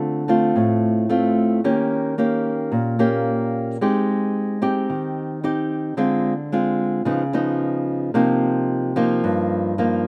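A straight 4/4 bossa nova pulse at 110 BPM carries this relaxed, breezy fragment of a longer piece, where a solo fingerpicked nylon-string guitar, small in sound and up front with a slapback echo, moves through Dm7, Eb7, Abmaj7, Dm7b5, Db9 and Cm7 across ten seconds of dry open-air sound.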